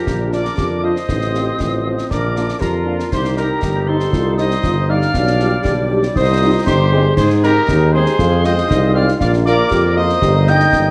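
In a straight 2/4 at 118 BPM, this proud, rousing military-style march for wind band is cut from a longer piece and settles into Eb major from 7.2 s. A mellow, distant cornet carries the melody with light vibrato, while an expressive, pure-toned piccolo, a tight woodwind section and a smooth euphonium in the background add second lines. A clear trombone section holds sustained chords, a very quiet French horn section adds accompaniment, and an up-front tuba anchors the bass with a soft attack, as close, dry concert snare drum, bass drum and dark clash cymbals drive the march within a dark production and wet large-studio reverb.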